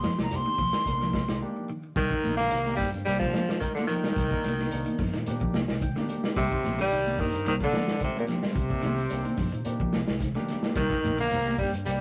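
A raspy, gritty tenor saxophone leads this intense, defiant afrobeat excerpt from 2.0 seconds, sitting up front with light vibrato and scooped notes, shadowed by an edgy baritone saxophone in the background and a very quiet, close-miked trumpet on the second line. Before the horns arrive, a hollow, pure concert flute plays a brief tongued phrase with vibrato that gives way to a break at 1.4 seconds. Underneath, a muffled, lo-fi vintage drum kit sits up front with a tight kick, medium-tuned snare and hi-hat. A round, punchy fingered electric bass drives the groove, which carries a light sixteenth-note swing. Bright, high-tuned congas and a grainy shekere, heard only at the start and the end, ride in the background, alongside clean picked electric guitar arpeggios with tape echo and a barky, overdriven tine electric piano through a combo amp that adds a fill at 5.3 seconds. The excerpt has the rough feel of a rehearsal room, with a moderate stone-room reverb.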